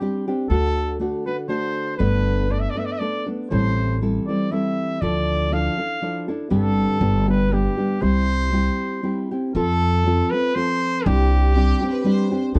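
A clear, roomy classical-style trumpet carries the melody over fingerpicked nylon-string guitar from the opening, joined at 0.5 seconds by a woody pizzicato upright bass, giving this proud, festive mariachi piece in lightly swung triple time a dark, warm production with light reverb, before a lush bowed violin section with vibrato and slapback echo enters briefly at 11.5 seconds.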